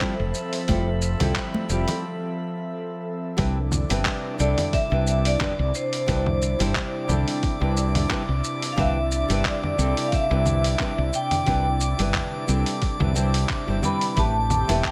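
A relaxed 4/4 groove at 89 BPM with a light 16th-note swing sets up this blissful sunset chillout excerpt in C major. A soft, tape-warm electronic kick sits under a gritty, compressed sampler-style kit of congas, handclaps, hi-hat and shaker in a small room. Bright, damped hand congas play quietly in the background from 0.7 seconds, before a break from 2.0 to 3.4 seconds, after which the harmony moves from Fmaj7 to Cmaj9 and later settles on Am9. A dark, round, woody fretless electric bass sits up front. Over it, a dry, close-miked vibraphone with medium hard mallets and fast motor vibrato carries the ringing, metallic melody through a delay. A bright, fingerpicked nylon-string guitar with audible finger squeak accompanies through digital delay, while an airy, breathy pad with chorus holds sustained chords and a glassy, drifting harmonics texture glimmers softly in the background, all within a light reverb.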